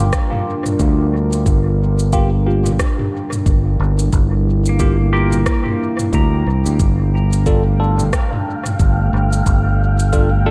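A swung, echo-heavy ambient dub groove in 4/4 rests on a deep electronic kick and an organic electronic kit of cabasa, rim click and toms, both with a big-room sound, while a growly, overdriven fingered bass sits up front. A moody, full-bodied pad holds sustained chords that move from Gm7 to Dm/G, a bright, barky tine electric piano drops dub-echoed stabs through a phaser, and a twangy, filtered pedal steel guitar plays background arpeggios with slide and volume swells around 4.7 to 7.0 seconds. From 7.6 seconds an airy, breathy wind-like noise texture drifts in, deepening the hazy atmosphere of this excerpt from a longer piece.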